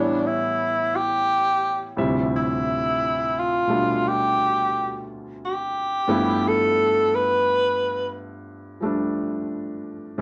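This jazz ballad fragment moves at a slow, swung 58 BPM with an intimate, late-night mood, passing through A7, Dm11 and G13. A breathy, mellow tenor saxophone carries the solo melody up front, with subtone, vibrato and scooped notes, until it stops at 8.2 s. A baby grand piano with a short sustain and audible action noise accompanies close by and plays on alone to 10.2 s, all within a small, wet room reverb.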